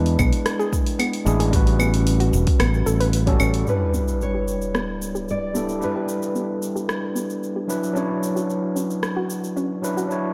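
Sunset chillout at 112 BPM with a sunny, relaxed mood: a gritty, overdriven tine electric piano with a filter sweep and analog delay carries the chords over a dreamy hall reverb, while a punchy, bright fingered electric bass and a deep electronic kick drive the opening until about 3.6 seconds. A deep house kit of cabasa, claves, hi-hat and rim click, along with a soft, round background pluck playing chorused arpeggios, runs throughout. At 3.7 seconds, a sub drop impact ushers in a woody, full-bodied nylon-string guitar melody, as the harmony moves from E7 and A13 to Em7 and Dmaj9.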